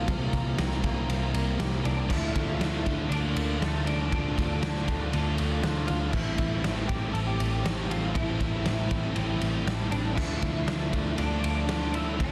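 A gritty, saturated garage drum kit sits up front with a punchy kick and a rolled-off top in this brooding, hazy shoegaze and dream pop rock excerpt at 119 BPM in D minor, joined by a round, foam-muted vintage bass, a lo-fi small-amp guitar melody bathed in ensemble chorus and digital delay, very quiet clean direct-recorded arpeggios, a biting overdriven riff with chorus and a slightly broken-up riff washed in reverse reverb in the background, while a bright, double-tracked tight distorted guitar enters at 2.1 seconds, within a dry, dense, heavily limited master.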